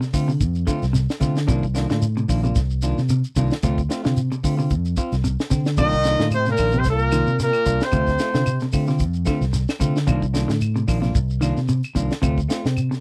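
A tight funk drum kit with a high-tuned snare drives this intense, defiant afrobeat groove at 112 BPM in C dorian, with a lightly swung sixteenth feel, grainy shekere and a round, up-front fingered electric bass moving between Dm7 and Cm11. A slightly broken-up, twangy electric guitar picks arpeggios in the background while a dark, clean semi-hollow guitar adds stabs. At 5.8 seconds a clear trumpet carries the melody over a breathy, whispered trombone and a punchy trombone section until 8.6 seconds, and faint woody claves join at that same 5.8-second mark, in a close 1970s-style studio recording with little reverb.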